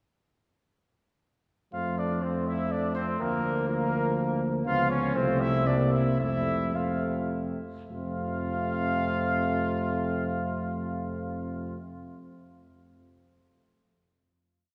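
Classical brass quintet piece in 3/4 and F major, noble and triumphant, moving at 100-124 BPM and slowing from 3.9 to 7.9 seconds, where a dark trumpet carries the melody with light vibrato, a distant mellow trumpet doubles the tune at the octave, a vintage-toned French horn and a punchy euphonium supply chords in the rhythm of the tune alongside sustained chords, and an up-front tuba holds a smooth sustained bass through harmony that turns from F through Db7 and C7 back home, all set in a wet church reverb heard from further back in the room, with the final chord ringing from 7.9 to 11.5 seconds.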